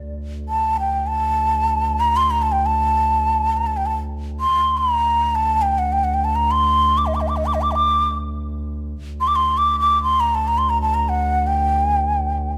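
The breathy, mellow ney leads this short excerpt from a longer Arabic maqam piece, entering at 0.5 seconds and sitting up front with an expressive, tongued line shaded by vibrato across a range from Eb5+25c to D6. Beneath it, a single bowed double bass holds a dark drone on D2 throughout, played sul tasto with a soft attack and light vibrato, giving it an intimate, close presence and a smooth top. The music unfolds in free time in D maqam hijaz, creating a hypnotic, longing mood. A moderate recital hall reverb of 1.6 seconds surrounds the pair, lending the reed cane's tone a gentle halo as the passage closes near 12.6 seconds.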